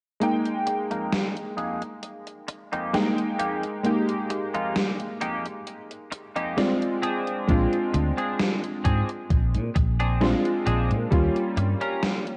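Vaporwave at 66 BPM in F minor, melancholic and woozy, where a clear, clangy electric grand piano with chorused unisons and tape echo plays over Fm11, Bb9 and Eb9 chords beside a gated, overdriven 80s drum machine on hi-hat and snare, while a twangy, filter-swept clean electric guitar riff enters at 0.7 s and a growly fingered bass and thumpy overdriven electronic kick join at 7.5 s, all wrapped in concert hall reverb and worn, warbling cassette tape drift in a cut from a longer piece.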